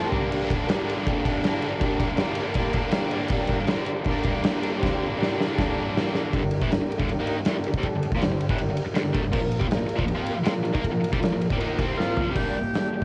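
An up-front, oversized low-tuned drum kit with a boomy kick and dark cymbals drives this gritty, menacing garage rock excerpt in G minor at 159 BPM, with fills at 4.8 s and 12.0 s, while a double-tracked, overdriven cranked stack guitar riff and sustained chords from a buzzy vintage combo organ fill out the sound, and a mellow, heavily vibratoed second combo organ slips in a brief background melody at 12.0 s, all captured as a home cassette recording with light reverb.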